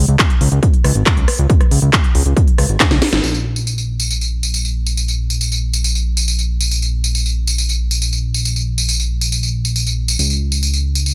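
A fat, detuned analog bass with sawtooth and square-wave bite, ring modulation, saturation and a filter sweep pumps under sidechain from the very start of this soaring, emotional uplifting trance excerpt at 138 BPM in straight 4/4. A heavy, tape-warm electronic kick sits up front until 2.9 s, alongside a layered techno kit of cracking snare, smooth pumping hats, handclaps, rim click and tambourine. A drum fill from 2.8 s and a band accent at 3.1 s push into the next section, where bass and kit carry on under light reverb.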